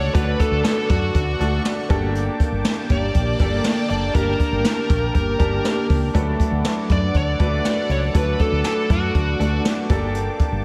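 A dark, distorted electric lead guitar carries the melody in this romantic, nostalgic 1980s-style pop excerpt, its picked, bluesy lines colored by overdrive and tape echo before it drops out at 9.6 s. Underneath, a bright grand piano with a subtle chorus supplies brilliant accompaniment, while a round, hollow-bodied fretless electric bass adds a woody low end. A sweeping, resonant pad built from detuned sawtooth and triangle tones with ring modulation and a slow filter swell holds sustained chords in the background. A very quiet, nasal polysynth adds punchy, funky stabs with a moving notch filter. A boomy-kicked jazz kit played with brushes sits up front at a straight 120 BPM in 4/4, and the whole mix is soaked in a lush hall reverb that gives it a dreamy glow as the harmony moves between D and Gmadd9.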